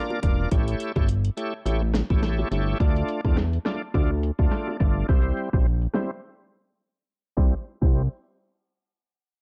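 A swung sixteenth-note groove in 4/4 drives this short, sunny dancehall cut, taken from a longer piece. Up front, an electronic pop drum kit hits with a punchy kick, a fat snare, metallic hi-hats, rim clicks and crash cymbal, its layered sound overdriven and re-recorded in a small room. A thick, detuned sawtooth analog bass sits just as close, saturated and sustained with a fast attack. A bright tonewheel organ comps over Bb, A7, Dm and C chords, full and shouting with key click, light overdrive, chorus vibrato and a slow rotary speaker, while very quiet, high-tuned acoustic bongos add a tight patter beneath. A filter sweep runs through the opening 7.4 seconds, with a break arriving at 6.2 seconds, and the dry, dark, low-passed production gives the summery mood a mellow glow.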